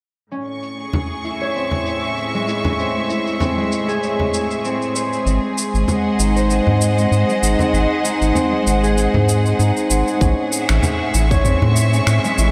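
Smooth, bowed symphonic strings with light vibrato and sidechain pumping open this hypnotic, meditative organic downtempo excerpt at 97 BPM with a gentle 16th-note swing, sounding from 0.3 seconds alongside ringing thumb-plucked harp arpeggios carrying tape echo and a filter sweep and a tape-warm, low-pass filtered electronic kit of finger snaps, shaker and toms, with a close, dry frame drum joining at 0.9 seconds. A round, deep, nasal analog bass arrives up front at 5.3 seconds as the harmony moves from Amaj7 to G#7, and a tight, reverberant electronic kick enters at 10.2 seconds as Amaj7 returns, all within a dreamy mix soaked in cathedral reverb.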